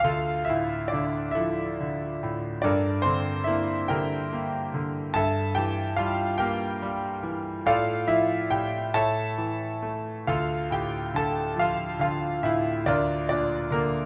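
A bright concert grand piano opens on a D minor chord with an added ninth and carries this reflective, wistful classical solo through a lyrical, rubato 6/8 at 47 BPM, its brilliant yet worn tone sitting up front with audible action noise and deep bass reaching from D2 to A5, in a moderate recital hall reverb, as the harmony moves through G minor, a diminished chord and a cadence on A before returning to D minor and settling on Bb/D at 12.9 seconds in this 14.1-second excerpt cut from a longer piece.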